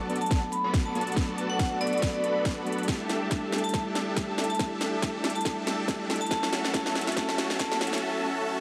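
A dreamy, emotional stretch of future bass with a half-time, lightly swung feel, cut from a longer piece and built as one rising build-up across its 8.6 seconds. Huge, detuned supersaw chords carry the riff up front through lush chorus, sidechain pumping and a low-pass filter, moving from Bm7 to A7sus4 at 2.9 s and to F#m7 at 6.3 s. Beneath them a mellow tine electric piano plays accompaniment through built-in speakers, pumping and trailing tape echo, while a vibraphone struck with hard mallets sings the melody in a ringing, metallic voice with fast motor vibrato and delay. The drums sit up front: a hard-clipped, overdriven electronic kick and a trap kit with a sharp snare and metallic hats, both re-recorded in a small room, run a fill through almost the whole passage as a filter sweep spans it. A very quiet riser slips in at 6.3 s, and the dark production is bathed in a wet hall reverb.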